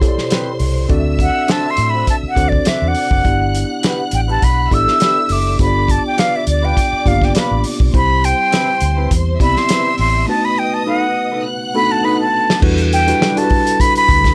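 Lush 1970s-style soul with a smooth, cinematic mood, moving at 102 BPM in E minor with a light sixteenth-note swing, cut from a longer piece. A breathy, close-miked concert flute enters at 1.2 s and carries the solo melody up front with a soft attack and straight tone. Beneath it, a worn, slightly out-of-tune tine electric piano supplies clean accompaniment. A dark, round, foam-muted fingered bass and a warm soul drum kit with a fat snare, tight kick and dark cymbals anchor the groove, with a drum fill arriving at 11.5 s. A dark, clean electric guitar plays a fingered riff through a lush chorus, while a smooth, bowed studio string section sings a second line with vibrato until 12.6 s. A very quiet, metallic vibraphone adds ringing touches, briefly at 4.7 s and again from 10.3 s to the end. The harmony moves from Am9 through D7, G6, G7, Cmaj7 and B7 before settling on Em9, all set in a light reverb with a pumping room sound on the drums.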